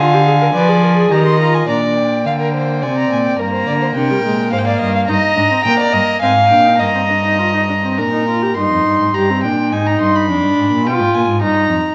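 In a steady 3/4 at 105 BPM with a straight feel, this excerpt from a baroque-style fugue for string quartet moves with a contemplative yet driving character, settling into Eb major from 5.1 s. Each part is a single bowed player in period style with gut strings and a reedy edge. One violin carries the melody high in its range with light vibrato, while a second violin, also lightly vibrato and placed up front, weaves a second line until it drops out at 8.6 s. The viola fills the middle with a warm accompaniment, and a rich, up-front cello anchors the bass. The harmony passes through a diminished opening, an Abmaj9 colour near the end and a close on Eb/G, and a moderate scoring-stage reverb surrounds the ensemble. Over it all lies the character of worn cassette tape, whose warbly pitch drift gives the period sound a faded, wavering patina.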